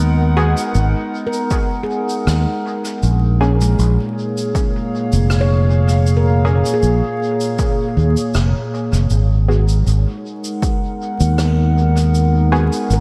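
A punchy fingered electric bass sits up front through this meditative ambient dub excerpt, its warm, amped tone anchoring an unhurried, straight 4/4 groove. Behind it, a warbling, detuned tape-like pad holds sustained chords with a slow attack, chorus and its own reverb. That pad lends a nostalgic lo-fi haze as the harmony moves between G#m7 and A#m7. A muted, sawtooth-edged dub chord stab with a filter pluck and chorus arrives at 0.4 seconds. A shaker and rim click with a rolled-off top and a soft, ringing handpan arpeggio enter shortly after, each trailing dub echo. An overdriven electronic kick drum hits in at 1.5 seconds and stops at 10.8 seconds, while the mix is soaked in plate reverb and dusted with vinyl crackle for a dreamy, deep atmosphere.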